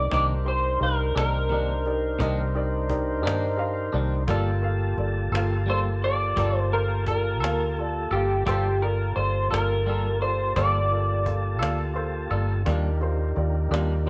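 A slow 12/8 blues at 57 BPM with a straight feel sits in G minor, smoky and brooding, in light small-room reverb as the chords move from Cm9 to Gm9 and Ebmaj7. Up front, an electric guitar through a small old amp carries the melody until 11.9 s, dark, slightly broken-up and lo-fi with analog chorus, over a round, foam-muted fingered bass. A tonewheel organ holds clear chords through a slow rotary speaker, a worn concert grand piano in the background adds a fill at 3.2 s, a twangy clean guitar plays with harmonic tremolo, and a cajon played with hard hands gives a woody pulse with faint snares.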